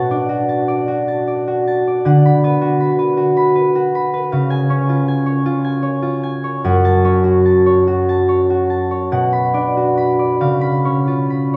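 Gentle and mysterious, this brief section of a longer classical solo harp piece drifts in a rubato 6/8 at roughly 41-54 BPM. A bright, ringing concert harp, thumb-plucked and up front, spans from F#2 to B5 and moves from Bm7 through C# and F#m before closing on C#7, all bathed in a wet cathedral reverb with a 5.3 s decay.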